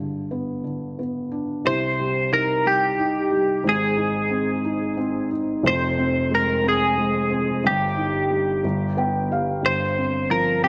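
A felt-muted upright piano opens this aching, dramatic pop fragment in a straight 6/8, its thick-felt tone dark, mellow and intimate as it carries the accompaniment from low bass notes up into the treble. At 1.7 seconds a clean, picked twelve-string electric guitar takes the melody in a narrow upper range, its bright, twangy, compressed sound sitting up front beside the piano as the harmony moves from C minor through A-flat and F minor toward G. A brief felt piano fill at 8.6 seconds leads into a suspended G7sus4 chord, all set in light reverb and studio ambience.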